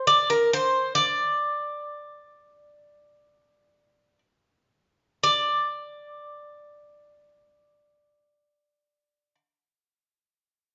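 A solo acoustic Greek bouzouki, picked and up front, rings with a metallic, double-stringed tone, some strings doubled at the octave, as it moves between Bb4 and D5 in this short, reflective and melancholic Greek folk excerpt. The phrase slows through its opening 5.2 seconds before a second idea carries on until the bouzouki stops at 9.3 seconds. It was played live in a large studio room with moderate reverb, and its top end tapers off by around 7.6 kHz.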